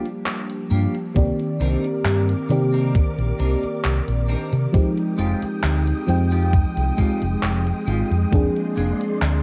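A gated 80s digital drum machine taps out handclaps and hi-hat in a large gated room, joined from 1.2 seconds by a thumpy, overdriven electronic kick sitting up front, while a round, punchy fingered bass with tube saturation anchors this slow, straight 67 BPM vaporwave groove in F dorian. A dreamy, warbling FM electric piano with a soft pad layer carries the chords through a lush chorus and analog delay, a twangy, clean electric guitar picks a riff through its own chorus and delay, and from 1.7 seconds a silky string machine swells in with sustained ensemble-chorused chords. The melancholic, nostalgic excerpt has a dark, cassette-tape production with little reverb, moving from Gm7 through Cm9 and Fm9 to Bb9/F.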